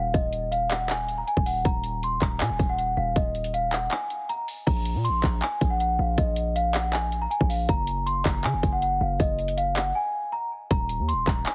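Eerie and hard-hitting, this half-time trap hip hop cut at 159 BPM sets a bell-like, low-pass-filtered large celesta melody with a vintage ring over a punchy, sine-heavy 808-style bass and an electronic trap kit of hard-clipped kick, metallic hi-hats, handclaps and crash, all dry and pushed up front in a heavily compressed radio sound, with brief breaks at 3.9 and 10.0 seconds.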